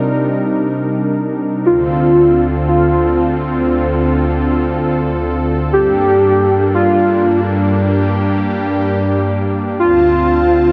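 Set in a moderate, lush hall reverb, this nostalgic, moody synthwave piece drifts in free time, tuned slightly flat of standard pitch. A warbling, detuned analog pad sits up front from the start, holding sustained chords with a soft attack and subtle chorus through a progression of Cm7, Dm7 and Gmadd9. At 1.7 seconds a velvety, wave-folded lead with vibrato, chorus and delay enters to sing a narrow, sustained melody that carries through to the end of the excerpt.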